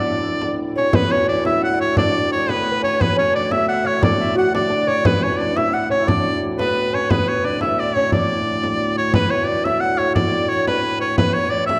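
Moving in a straight 6/8 at 117 BPM in D major, this rustic, festive medieval dance, cut from a longer piece, puts a brilliant, smooth-topped shawm with vibrato up front in folk style over an airy tenor recorder with a crisp chiff and a delicate, fingerpicked gut-string lute that stops at 8.9 s, both sitting in the background, while a reedy, nasal harmonium holds a low drone and a small, close frame drum enters at 0.4 s, the whole set in a dark production with a wet recital-hall reverb.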